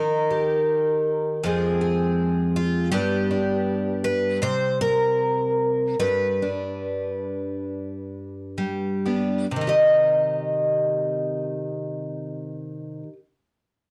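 Melancholic and intimate, this brief folk excerpt features a solo picked twelve-string acoustic guitar, up front with a shimmering, octave-doubled ring and audible finger squeaks, easing into a slowdown from 2.9 to 9.5 seconds before settling onto a C minor chord, all set in light reverb within a dark production.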